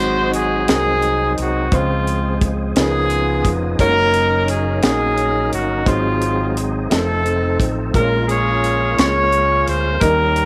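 A slow gospel groove in 6/8 at 58 beats per minute, straight-feeling and unhurried, sets a soulful, uplifting mood in this short piece cut from a longer performance. A horn section carries the melody up front, its ensemble tone warm and present with a light vibrato in a pop style. Beneath it, a baby grand piano plays accompaniment with a natural sound in the background, while a tonewheel organ holds sustained chords, reedy and bright with key click, chorus vibrato and a fast rotary speaker. A fingered electric bass, dark, amped and round, anchors the low end, and a tight funk drum kit of hi-hat, kick and snare enters at 0.3 seconds, placed up front with a high-tuned snare and the natural sound of a small room. The harmony moves from Ab7 through Dbmaj7, Db13 and Gb6 before returning to Ab7 and passing through F7 to settle on Bbm7, all under a light reverb.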